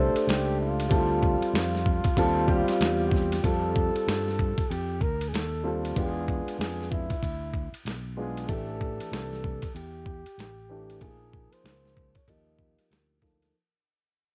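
A dark, mellow baby grand piano, a fretless electric bass and a jazz-style flugelhorn open this cool, relaxed jazz-hop excerpt at 95 BPM in F major, with a dusty soul sampler-style drum kit joining at 0.2 seconds. The up-front piano carries the smooth, vintage chords with long sustain through a low-pass filter and a cassette-tape tint, moving through colours such as Am7, Ebadd9 and E7b9. Beneath it, the bass sounds bright, amped and growly, with a punchy edge. The compressed, gritty drums swing their sixteenths, pairing a thumpy kick and a medium-tuned snare with hi-hat and ride. Over this, the soloing flugelhorn sings with light vibrato, a soft attack and scooped notes, softened by its own low-pass filter. From 3.4 seconds a filter sweep and fade-out set in, and the whole take carries the character of a home cassette recording in a moderate studio reverb.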